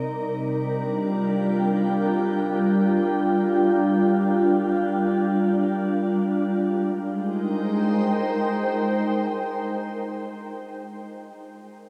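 Serene and warm, this free-time ambient fragment in A-flat Lydian, cut from a longer piece, features a lone glassy, ethereal FM pad sitting up front with slow attacks, long sustained tones and a lingering release, thickened by ensemble chorus, its own reverb and delay, and bathed in a huge, wet ambient space as the harmony drifts from Gm7 to Abmaj7 at 6.7 seconds.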